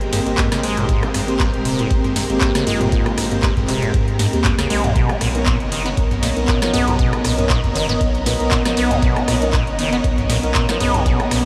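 Raw and playful, this acid house excerpt moves at 118 BPM in 4/4 with a light swing on the sixteenths, shifting from Abmaj9 to Bmaj9 at 5.0 seconds. A squelchy, resonant acid bass riff with a filter sweep, phaser, overdrive and analog delay leads over a thick, saturated sine sub bass, a deep tape-warm electronic kick entering at 0.4 seconds, and a booming analog drum machine with crisp snare, metallic hats, handclaps, ride, rim clicks and toms, while a gritty sampler-style kit of hi-hat and snare sits very quietly underneath. Mellow, clean tine electric piano stabs with analog delay sit alongside a lush vintage string machine in chorus and a cloudy, evolving granular pad, both pumping in the background of a dreamy mix soaked in huge ambient reverb.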